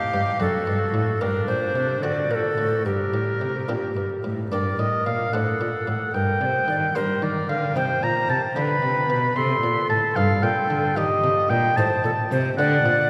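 Grave and flowing, this baroque-style sonata movement in G minor moves in a straight 6/8 at 74 BPM, with a breathy tenor recorder carrying the melody alongside a clear, up-front oboe on the second line, a muted, lute-like buff-stop harpsichord in the background and an expressive bowed cello on the bass, its portamento sliding between notes, all heard in a long, resonant church or concert hall acoustic in a passage cut from a longer piece.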